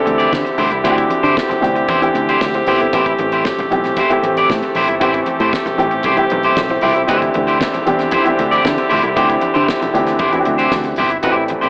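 Disco at 116 BPM in a straight 4/4, this short, joyful, danceable cut from a longer piece moves from D9sus4 to Am7 at 2.9 seconds and back to D9sus4 at 7.1 seconds. An up-front baby grand piano with a natural tone and a twangy, picked electric guitar at the edge of break-up carry the accompaniment, while a muted French horn section holds sustained chords with a nasal, metallic, stopped quality that sits distant and roomy in a classical-style ensemble. Underneath, a fingered electric bass gives a punchy, foam-muted, direct low end. A damped 70s drum kit plays hi-hat, tight kick and fat snare with gated reverb, and very quiet congas add a ringing, medium-tuned touch from a small room. The whole mix has light studio reverb and an AM radio sound.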